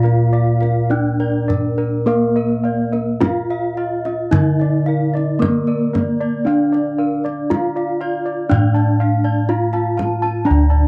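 Shimmering and stately, this short cut from a longer Javanese gamelan piece in D pelog moves at a slow 52-63 BPM in a straight 4/4, with a bronze metallophone carrying the close, full, up-front melody, a second ringing metallophone and mellow, padded bossed gongs weaving arpeggios above, bright gongs holding a deep bass, and a soft-handed kendang adding vintage, band-limited drumming from 0.1 to 10.4 seconds, all captured in a dry, close 1970s-style studio sound.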